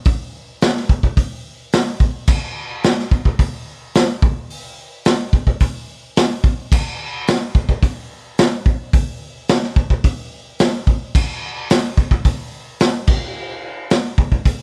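Confident and swaggering, this short rock excerpt moves at 108 BPM in a straight 4/4 feel. A single raw garage drum kit carries the whole piece, entering at 0.1 seconds and playing through to 14.6 seconds. Kick drum, snare drum, hi-hat and crash cymbal make up the kit, with a punchy kick and a medium-tuned snare sitting up front in the mix. The acoustic kit has a gritty, saturated character and a rolled-off top, heard in a small, pumping room. A light reverb rounds out the sound, giving the drums a close, rough-edged presence throughout.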